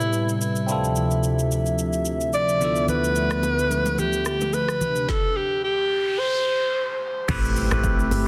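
A breathy, intimate alto saxophone carries the soulful melody through tape echo from the opening, over a bell-like electric piano with phaser, a hollow, flute-like pad with chorus and sidechain pumping, and a produced afro-pop drum kit with a deep kick, woody snare and crisp hats, all moving through Am9, Dm9 and Cmaj9 in a relaxed 109 BPM amapiano groove with a light 16th-note swing. Close, dry congas and bongos join quietly in the background at 2.9 seconds, and an electronic noise sweep runs from 5.7 seconds into an impact. At 7.3 seconds a round, dark log drum bass with a fast attack lands, and the dense, heavily limited mix sits in light digital ambience.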